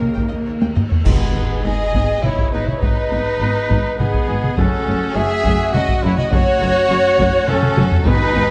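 Compressed, saturated taiko drums hammered with heavy sticks drive this dramatic, relentless epic orchestral film score cue in 3/4, where a focused violin melody with a smooth top rides over a distant second violin line, very quiet lush violas, dark close-miked woodwind chords, mellow vintage trumpet stabs, and a bowed cello and double bass foundation, until at 1.1 seconds a pure silver flute, present French horns, a bright crash of clash cymbals with concert bass drum, and timpani on medium mallets join in a moderate scoring-stage reverb.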